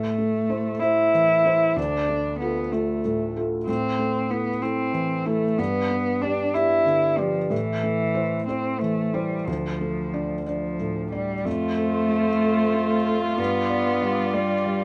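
In a rubato 6/8 at 62 BPM counted in dotted quarters, this reflective, melancholic neoclassical piece for piano and strings unfolds in A minor, cut from a longer work. A felt-muted upright piano plays the accompaniment throughout, its mellow, intimate tone sitting up front with audible action noise and a vintage character. Alongside it from the start, a single con sordino cello carries the second line, dark and veiled with light vibrato and a soft attack. At 11.4 seconds a lone muted viola joins on F4, and a moment later a muted chamber string section adds sustained chords in the background as the harmony moves from F to G7. The chords circle between Am, Dm and G before that turn, all bathed in light reverb.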